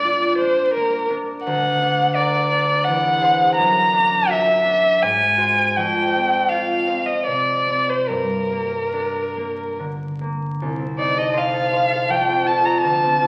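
Wistful and hazy, this brief excerpt of an impressionist classical duo for violin and harp drifts in 3/4 at a rubato pace between 70 and 87 BPM. It is centred on G minor, with the tuning set at A4 = 435 Hz. A warm, bowed violin carries the melody throughout, a single player heard close and up front, with a soft attack, vibrato and expressive portamento between Bb4 and Bb5. Beneath it, the concert harp supplies fingerpicked accompaniment across the full 13.3 seconds, its ringing acoustic tone reaching from C2 up to B#4 and sitting lower in level than the violin. The harmony wanders through unsettled augmented and seventh chords before reaching G minor, then turns at 10.6 seconds to a new passage that moves from Cm6 to Fadd9. A reverberant recital hall and the crackle of a very old 78 rpm record give the sound an aged patina.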